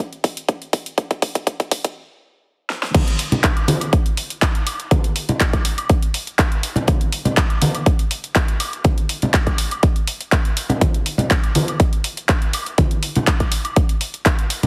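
House track at 122 BPM in a straight 4/4, cut from a longer piece, with an expansive, driving mood. It opens with a short build-up, where a drum fill from the big-room dance kit leads into a brief stop at 2.0 seconds before the drop lands at 2.9 seconds. The kit is layered and overdriven, with a huge snare, handclaps, hi-hat and crash cymbal, while the hats and cymbals pump against the sidechain in a small room ambience. Up front sits a punchy, overdriven electronic kick, and from the drop onward hard-handed acoustic congas and woodblock join, their pulse also pumping with the sidechain. The overall sound is dry and heavily compressed in a radio style, with a high-pass filter trimming the low end of the mix.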